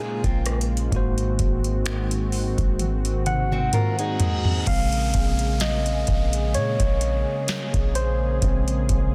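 A clean tine electric piano, a smooth, detuned sawtooth pad with chorus and sidechain pumping, and a boxy fingerpicked ladder-braced acoustic guitar with tape echo that plays until 4.6 seconds open this sensual, late-night contemporary R&B excerpt in Bb minor at 64 BPM. They are joined by a deep sine 808-style bass and a booming analog drum machine with crisp soft-clipped snare, metallic hats and finger snaps heard in a large room, with a drum fill and reverse cymbal with a downlifter leading into an electric piano solo at 4.7 seconds, all under a dense, heavily limited modern master.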